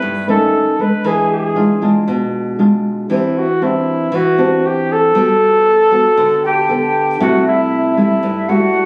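A mellow, close-miked flugelhorn with light vibrato carries the melody up front over dark, thumb-plucked nylon-string guitar with audible finger squeak, while soft-mallet vibraphone rings in the background briefly at the start and again from 6.4 seconds, when a pure, hollow concert flute adds a second line in this breezy, sophisticated bossa nova fragment in G major at 117 BPM, heard through a phone-recorded club room with light reverb and compression.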